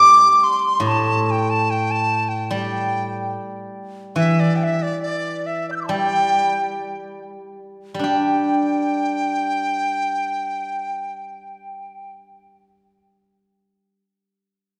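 A resonant concert hall wraps this short excerpt of Chinese traditional chamber music in a lush reverberation, giving it a graceful, festive air. A bamboo dizi carries the melody up front, its pure tone edged by a buzzing membrane, shaped with vibrato, a soft attack and an expressive touch. Beneath it, a steel-string zither played with fingerpicks supplies the accompaniment in a lower register, its ringing, silvery strings also sitting close to the listener. The music moves freely in rubato, slowing between 4.2 and 8.1 seconds before a new section begins. The dizi falls silent at 12.1 seconds, and the zither rings on alone until 14.0 seconds.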